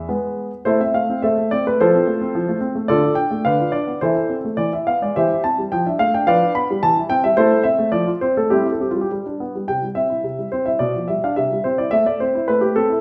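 A classical-period piano sonatina, this short excerpt cut from a longer piece carries a serious, dramatic mood at 107 BPM in a straight 2/4. A lone grand piano plays throughout, its tone warm and present, sitting up front and ranging from B2 to B5. The music opens in A minor, moving through F, D minor and a diminished chord before landing on E, then turns toward C major from 5.1 seconds with G7 harmonies pulling it home. A second section begins at 9.7 seconds, settling on C before the final A minor chord at 11.9 seconds. A recital hall's wet reverb, with a 1.3-second decay, surrounds the instrument and lends the playing a spacious, resonant setting.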